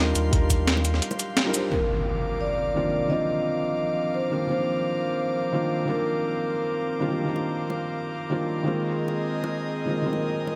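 This soulful, rolling liquid drum and bass fragment at 173 BPM opens on an Ebmaj9 chord. A soft-mallet vibraphone carries the melody over a felt-muted upright piano whose thick felt and audible action noise sit up front and intimate, and both are trailed by digital delay. An airy, breathy pad holds sustained chords beneath them, its detuned layers thickened by chorus and pumping against a sidechain, while a round sine sub bass sounds only briefly at the start. A gritty, pitched-up breakbeat kit of snare, hi-hat, shaker and crash comes in just after, dulled by low-pass filters, with a thumpy electronic kick hitting near the top and low-tuned bongos sitting in the background in a small room. After a short break and a band accent, an electronic impact marks the move to Cm11 at 1.7 seconds; the vibraphone falls silent at 7.1 seconds, and the harmony shifts to Bb9sus4 at 8.7 seconds, all inside a moderate, lush hall reverb.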